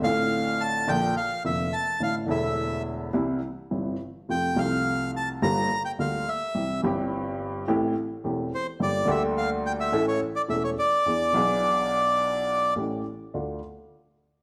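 Moving in a rubato 4/4 at around 106 BPM, this short tango, cut from a longer piece, sets a sultry, dramatic mood in D minor. A reedy bandoneon carries the melody up front in its upper register. Beside it, an upright piano plays the accompaniment with a woody, intimate and natural tone, and its action noise can be heard. The harmony travels from Dm7 through Bb, Asus4, C, F and Gm7, then on through Am7, Gm and A to an E7 and A7 before settling on Dm near the close. The bandoneon stops at 12.7 seconds, and the piano carries on alone until 13.6 seconds, all within a wet, large studio reverb that gives the pair a roomy glow.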